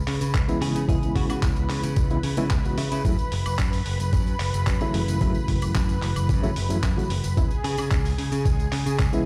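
Heard through a big sound system in a bare stone room, this sleek, cosmic nu-disco excerpt in F# minor at 111 BPM rides on a thumpy, gritty electronic kick and a punchy, up-front picked electric bass, with a dusty soul sampler kit of handclaps, hi-hat and woodblock, a close, dry tambourine, a reedy electric piano shimmering with fast tremolo and delay, and a lush, detuned sawtooth pad pumping under sidechain and chorus across C#m7 and F#m7, while a twangy, scooped clean guitar sits in the background from 0.6 to 3.0 seconds and briefly returns at 7.6 seconds.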